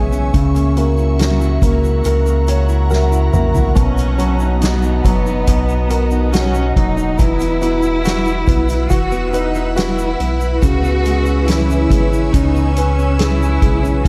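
A straight, unhurried 4/4 pulse at 70 BPM comes from a soft-mallet drum kit with a boomy kick and a medium-tuned snare, joined by a grainy tube shaker in the background and a fill at 2.9 seconds, in this heartfelt, hopeful pop ballad excerpt. A woody upright piano accompanies while a fingerpicked, full-bodied steel-string acoustic guitar with delay plays arpeggios through the chords F#7/C#, Bmaj7, Esus2 and C#m7, over a deep, round sub bass that sits up front and an ethereal, airy pad washed in chorus, phaser and reverb. At 3.8 seconds a rich, smooth bowed cello section enters with vibrato as a second line, all set in a dark production with light small-room ambience.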